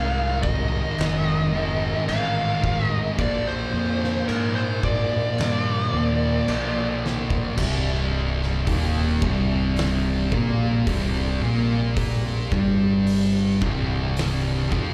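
Stoner and doom metal at a crawling 55 BPM in C minor, ominous and brooding, heard as a live club gig through the venue's PA: an up-front, double-tracked thick fuzz guitar riff with slapback echo sits alongside a growly overdriven fingered bass, while an oversized low-tuned drum kit with a fat snare, punchy kick and dark cymbals enters at 0.4 seconds, a dark, compressed fuzz lead guitar with slapback echo and digital delay carries the melody until 7.0 seconds, a drum fill follows, and a mellow, round tonewheel organ with key click, chorus vibrato and fast rotary speaker holds sustained chords in the background as the harmony moves from Ab and Bb to Cm at 7.6 seconds.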